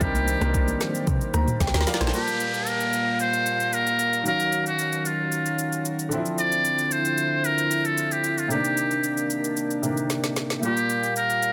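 A brilliant, buzzy trumpet with a metal mute leads this deep, hypnotic amapiano excerpt in G minor at 113 BPM, its thin, vintage jazz-style tone carrying vibrato and scooped notes through tape echo, while a clear concert grand piano and a mellow, tight brass section holding sustained, sidechain-pumped chords move through minor ninth harmonies. An electronic afro-pop kit with a deep kick, woody snare and metallic hats runs throughout, and a round, dark log drum bass and distant, ringing congas play only in the opening drop, which closes with piano and drum fills before the bass drops out at 2.1 seconds. A background downlifter then sweeps in until 6.4 seconds, and a second drum fill arrives near 10.1 seconds, all under light reverb in a dense, heavily limited modern master.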